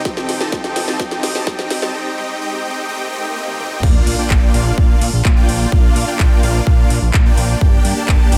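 Anthemic and triumphant, this festival progressive house passage opens with a build-up of drum fills from a house drum kit with cracking snare and metallic hats, a punchy up-front electronic kick, huge detuned supersaw chords carrying a riff with sidechain pumping and dub echo, and dark, woody symphonic strings sustaining chords in the distance. A riser and swell climb in the background until the drop lands at 3.8 seconds with an impact and sub drop, as a fat, nasal, saturated analog bass enters under the pumping chords. Light reverb and a high-pass filter shape the overall sound.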